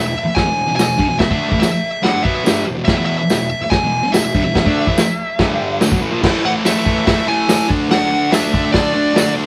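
A thick, bright fuzz guitar riff and a picked fuzz lead melody burst in together at 0.0 s, soon joined by a muffled, lo-fi vintage drum kit with tight kick, medium-tuned snare, hi-hat and crash, and by a jingly tambourine sitting distant in the background. This swaggering, rowdy garage rock cut drives a straight 4/4 at 143 BPM, centred on E before moving through G5 and E5 to an A5 section at 6.2 s and landing on D. With light reverb and the feel of a band playing live in one room, the double-tracked riff guitar and compressed lead stay up front beside the drums in this short fragment of a longer piece.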